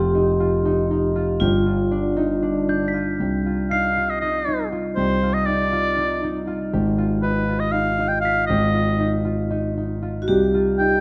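Contemporary instrumental chamber music in an uneven 7/8 metre, this excerpt feels urgent and hypnotic, with a straight pulse. A dark concert grand piano holds the bass throughout, deep and slightly boxy, sitting up front, while a concert harp plays mellow, thumb-plucked arpeggios that ring above it. A vibraphone struck with hard mallets adds a metallic second line with a medium motor vibrato, dropping out early and returning at 10.2 seconds. In the background, a glockenspiel played with soft rubber mallets scatters bell-like high textures. When the harmony settles into a minor colour at 3.2 seconds, a warm oboe enters at 3.7 seconds as the up-front solo melody, classical in style with light vibrato and a smooth top. The recording places the instruments close and detailed, with only a light reverb.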